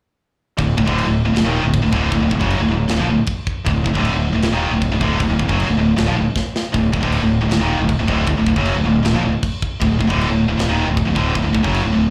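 Heard as a live gig through a club PA with small-room reverb, this dark, aggressive heavy metal excerpt is driven by two bright, high-gain picked electric guitars playing a distorted riff with slapback echo, one up front and the other in the background. A growly, fuzz-laden fingered electric bass sits up front alongside them, while a tight acoustic drum kit with a medium-tuned snare and a saturated, gritty, rolled-off sound plays kick, snare and crash cymbal. All four parts come in at 0.6 seconds, and the drums play a fill at 6.3 seconds before stopping at 11.8 seconds.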